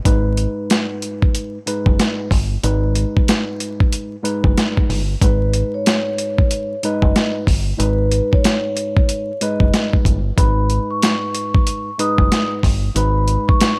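Boom-bap hip-hop at a swung 93 BPM in a tough, reflective mood, built on a gritty, overdriven sampler-style drum kit with a thumpy kick and medium-tuned snare up front, a dark, round fingered electric bass, and a mellow electric piano filtered through cassette-tape colour, with a close-miked, ringing soft-mallet vibraphone melody arriving at 5.2 seconds over a bed of vinyl crackle in this short excerpt.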